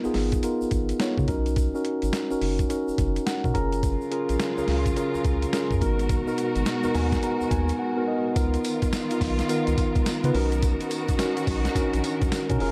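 New jack swing R&B at 106 BPM with a flirty, bouncy swing, built on a mellow, clean tine electric piano up front over a round, deep analog bass, a gritty, overdriven boom bap sampler-style kit with a thumpy kick, snare, hi-hat and tambourine, and a grainy tube shaker in the background, while a bowed string section with vibrato and portamento joins at 3.8 seconds on sustained chords as the harmony moves through C#13, Bmaj7, F#maj7 and G#m9 in a dark production with light digital reverb.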